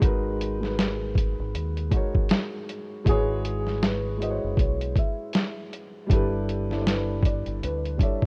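Swung sixteenths in 4/4 drive this nostalgic, dreamy lo-fi hip hop fragment, cut from a longer piece, as a compressed, muffled, pitched-down sampler kit thumps its kick under hi-hat and snare, with a round, deep dub fingered electric bass up front. A woody upright piano with long sustain comps through G#m7, E69 and G6. At 3.1 s a soft, intimate felt-muted upright piano enters with the melody, its action noise audible and its vintage tone trailed by tape echo, all in a dry, rough cassette demo mix.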